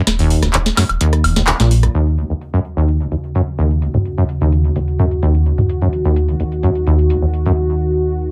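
A straight 4/4 pulse at 128 BPM drives this gritty, driving acid house excerpt in Eb minor, tuned to A4 = 438 Hz. A booming analog drum machine sits up front with crisp snare, metallic hats, handclaps, rim click, toms and woodblock. Its snare, hats, percussion and toms are low-pass filtered, the whole kit is tape-tinged, and a short room sits on snare, clap and hats. A deep, round sine sub bass holds the bottom between Eb1 and Bb1 through the opening stretch, ending at 1.9 s. Meanwhile a squelchy, resonant sawtooth acid bass riff with fast, decaying notes and analog chorus enters at 0.2 s, a touch louder than the other parts. After a band accent at 1.5 s, a warm, smooth, detuned sawtooth pad enters at 1.9 s on an Ebm7 chord, soft in attack and sustained with chorus, as a filter sweep moves across it. A break at 7.6 s leaves the pad sounding alone in a moderate small room ambience.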